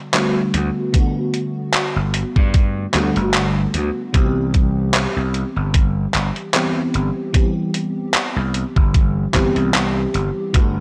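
A lush, chorused FM electric piano with a soft pad layer and tape echo opens this dreamy, woozy vaporwave fragment, drifting from Gmaj9 to Cmaj7 at 4.1 seconds as a gated 80s drum machine's handclaps and hi-hat bring gritty 12-bit sampler texture and a lightly swung feel, a growly overdriven slap bass enters at 0.5 seconds, and a thumpy, up-front electronic kick arrives at 0.9 seconds, all within a dry, gritty digital ambience.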